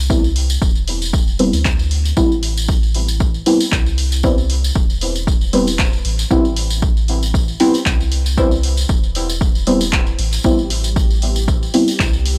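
Dub techno at 116 BPM in A minor, hazy and meditative, this short excerpt holds on a single Am7 as deep, mellow chord stabs, dark and nasal with chorus, phaser and dub echo, pump against a round, soft sub bass, while an up-front, punchy electronic kick, a jingly close tambourine and a tape-toned analog drum machine's handclaps and hi-hat ride a gentle 16th-note swing, until a bubbling, resonant stepped-filter texture slips in the background at 10.4 seconds, all captured in a dry, gritty hardware sound with transformer saturation.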